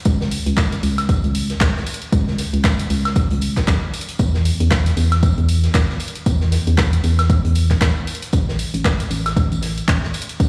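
Heard through a big sound system in a bare, stone-walled room, this moody, smooth deep house cut from a longer piece moves at 116 BPM in 4/4 with a 58% swing on the 16ths. An overdriven, punchy electronic kick sits up front beside a hollow, dark, organ-like FM bass, fast in attack and decaying, that pumps under sidechain between A1 and E2. An overdriven analog drum machine adds dry handclaps, hi-hat and woodblock, while a vintage acoustic kit with a medium-tuned snare, tambourine and pumping, rolled-off hats sits lower in the mix, all four parts playing from 0.1 to 10.5 seconds.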